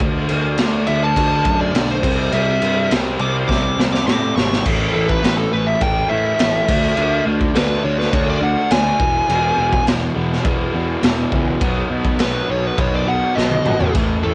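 A dry home cassette recording captures this rowdy, raw garage rock fragment at 103 BPM in a straight 4/4, moving through D and C before shifting to A5, D5, E and B. A double-tracked, bright fuzz guitar riff sits up front over punchy, overdriven fuzz bass and a gritty, pumping small-room drum kit with a rolled-off top, whose fills land at 3.5 and 13.4 seconds. From 0.9 seconds a compressed, distorted fuzz lead guitar carries the melody high above.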